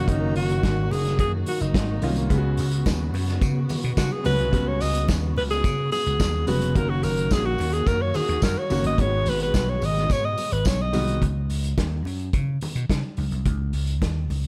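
This disco excerpt in G# minor moves at a driving, danceable 108 BPM in a straight 4/4. An up-front alto saxophone carries the melody as a clear, jazz-style solo, with vibrato, subtone and scooped notes. Beneath it, a baby grand piano gives natural, short-sustained accompaniment, and a dark, woody string section holds lush bowed chords in the background. The harmony moves through F#6, C#7sus4 and G#m7. A growly, amped slap bass and a punchy vintage drum kit sit up front, with the kit's pumping small-room sound, rolled-off top and medium-tuned snare. Very quiet, ringing congas add to the groove, and a jingly tambourine joins at 2.3 seconds. At 11.2 seconds the saxophone, piano and strings stop, leaving the bass, drums and congas to carry the beat until 14.5 seconds, all in a small room reverb.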